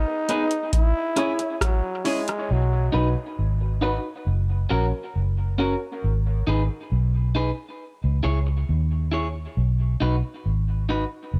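A slow, straight 4/4 dub reggae groove brings in a booming analog drum machine a moment after the start, with its deep kick, metallic hats and rim clicks sounding tape-warm and up front, though the drums drop out at 2.5 seconds. This short cut from a longer piece feels spacious and hazy, bathed in digital ambience. A raspy, growling trombone carries the melody at the very start, its gritty, vibrato-laden tone drenched in dub echo. Alongside it, a woody, slightly detuned upright piano punctuates with mellow stabs that trail into echo, while an electric guitar at the edge of break-up plays compressed, picked accompaniment with a warbly pitch drift until 11.0 seconds. From 2.5 seconds a foam-muted, round and punchy vintage bass takes the low end up front, anchoring the minor-tinged chords as they settle into the major home.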